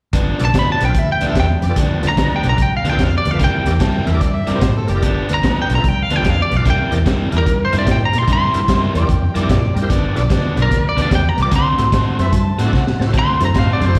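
A dark, picked riff on overdriven electric guitar with slapback echo opens this rollicking, swaggering electric blues shuffle at 148 BPM in G mixolydian, over a round, foam-muted fingered bass and a gritty, punchy breakbeat kit with a high-tuned snare, joined at 0.4 s by a twangy, up-front lead guitar with slapback and tape echo and a shouting tonewheel organ in the background with slow rotary speaker, key click and chorus vibrato, while an amplified, overdriven harmonica with scooped notes and tongue slaps cuts in from 3.7 s and again from 9.0 s before a drum fill at 12.7 s, all heard as a live gig through the venue's PA.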